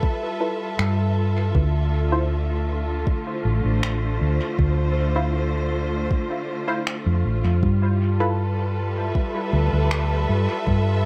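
Echo-heavy and lightly reverberant, this hazy, spacious slice of ambient dub is cut from a longer piece. A lush bowed string section holds sustained chords with vibrato, moving from G13 to Dm7 at 1.6 seconds and back to G13 at 7.6 seconds. A soft electronic kick drum and electronic finger snaps, both re-recorded in a small room, carry the straight pulse, with dub echo trailing the snaps. A dark, round hollow-body electric bass sits up front in the low register. From 0.4 seconds, muted, detuned filter-pluck chord stabs with a fast attack and short decay drift through chorus and dub echo, adding a mellow, deep colour alongside the strings.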